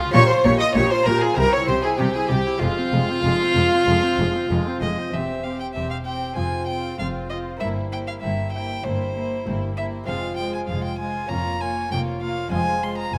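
Closely miked in a moderate stage reverb, this driving, dramatic baroque-style concerto fragment in F minor at 97 BPM sets a reedy, gut-strung solo violin up front on the melody over a rich violin section sharing the tune in the background, a second violin section on a supporting line, a dark, nasal viola section and a delicate fingerpicked lute in accompaniment, and a cello section and double bass section anchoring the bass, all in period style.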